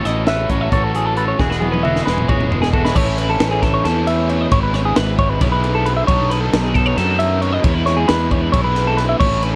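Bright and playful, this short excerpt of math rock and midwest emo races along at 269 BPM in eighths, counted in a straight 7/8 in E major. A twangy, clean electric guitar with spring reverb supplies picked accompaniment until 4.5 s, while a dark, hollow-body semi-hollow guitar spins compressed, fingered arpeggios. Underneath, a double-tracked overdriven guitar picks a riff through spring reverb, and a fuzz-driven fingered bass sits up front with a growly, punchy edge. The crisp fusion drum kit, heard in a small, pumping room with a high-tuned snare and punchy kick, works across crash, ride, hi-hat and toms, with a fill from 1.4 to 3.0 s leading into the second section. Chords move from F#m7/A and E69 to A, E6/G#, B7sus4 and E6. The whole track carries the worn, warbling pitch drift of old cassette tape, with little reverb around it.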